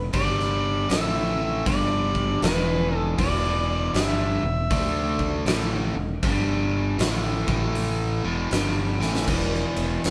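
Smoky and heavy, this brief cut from a longer blues rock and southern rock power-trio piece in E minor rolls at 79 BPM with a swung feel, as a gritty, amplified harmonica solos with tongue slaps and scooped notes until 5.4 seconds over a biting, double-tracked overdriven guitar riff up front, a growling fingered bass, and a huge arena kit with a fat snare and punchy kick that drops a fill at 8.9 seconds, all captured live in one room with a wet stone reverb through chords moving from G5 and A5 to Em and back to E5.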